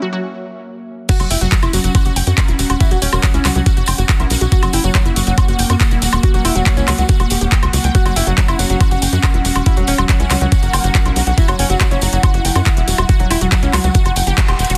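A driving, hypnotic psychedelic trance passage in straight 4/4, cut from a longer piece, opens on a brief break where a filter sweep moves across the ambient pad texture before the drop lands at 1.1 seconds. From the start, a screaming, guitar-like overdriven synth lead carries the melody with gritty distortion, phaser, vibrato and digital delay. Beneath it, a morphing wavetable pad holds sustained chords in the background, an airy, breathy pad adds mellow texture, and a lush, warbling unison pluck repeats a bright riff through tape echo, all of them pumping against the sidechain. At the drop, a knocking, overdriven electronic kick sits up front with a layered big-room dance kit of crash, handclaps, filtered hi-hat and woodblock, a jingly tambourine tucked behind. A tight, dark sequencer bass drives the low end from 1.2 seconds, while a metallic FM wobble bass surfaces very quietly in two short bursts, and a band accent and drum fill arrive near the close of this dense, heavily limited mix with light reverb.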